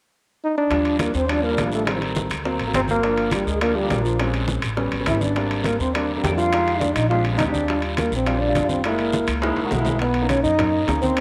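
Afro-Cuban jazz excerpt at a brisk 206 BPM in Eb major, lively and sophisticated, where a dark, punchy trombone with light vibrato and slapback echo leads from 0.4 seconds over a warm concert grand with audible action noise, a woody, thumpy pizzicato upright bass, ringing timbales, low-tuned congas and bongos and a raspy guiro, while a breathy, hollow flute adds a second line from 1.0 seconds, all bathed in wet spring reverb through rich chords like Ebmaj9 and Abmaj9#11 until a drum fill at 9.4 seconds leads into a closing shift to Bmaj9.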